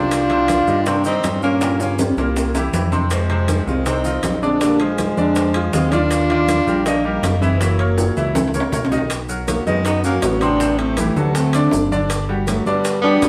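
A straight 4/4 Afro-Cuban jazz groove, sophisticated and lively, carries a dark, breathy trombone melody over a clear tenor saxophone second line, joined by bright, woody upright piano with audible action noise, a fat, saturated analog bass up front, ringing metal-shell timbales, and very quiet tight bongos, soft-handed congas and grainy maracas. Drum fills arrive at 1.6 and 8.0 seconds, the band playing together in one reverberant room as the harmony moves from Cm11 into a new section at 9.1 seconds that settles on Gmaj7, in this cut from a longer piece.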